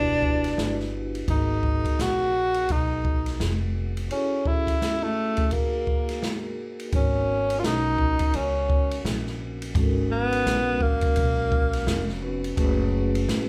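A live-in-one-room sound with light reverb carries this cool, smoky jazz-hop excerpt at 85 BPM with a swung 4/4 feel, where an up-front breathy tenor saxophone with scooped notes and light vibrato leads until 12.2 seconds over a ringing soft-mallet vibraphone with slow motor vibrato, a woody pizzicato upright bass on gut strings, and an acoustic jazz kit entering at 0.2 seconds with dark cymbals and a boomy kick, as the harmony settles into G# dorian from 6.9 seconds.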